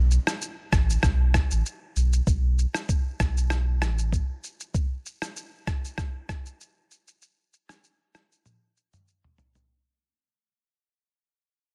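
A round, sine-toned sub bass opens this sultry, mellow afrobeats excerpt at 97 BPM with a lightly swung 16th-note feel, sitting deep and up front before it drops away at 4.2 seconds. A gritty, pitched-down boom bap sampler-style kit of thumpy kick, rim click, shaker and toms plays from 0.1 seconds to the end, compressed and forward in a digital ambience. The cut fades out throughout and closes with a drum fill at 8.5 seconds under a dense, heavily limited modern master.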